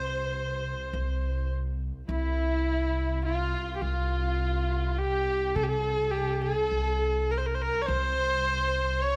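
Set in a straight 10/8 at 104 BPM counted in eighths, this Turkish makam ensemble piece in C makam hicaz unfolds with a passionate, stately bearing across a short 9.2-second excerpt cut from a longer work. An up-front kamancheh carries the melody with smooth, even bowing, vibrato and portamento, while a studio violin section sits in the background on a second line, expressive and vibrato-rich, and a woody pizzicato upright bass with steel strings holds the low end. Beneath them, a single bowed double bass sustains a dark drone on C2 with a soft attack, all captured by close, detailed microphones in light reverb.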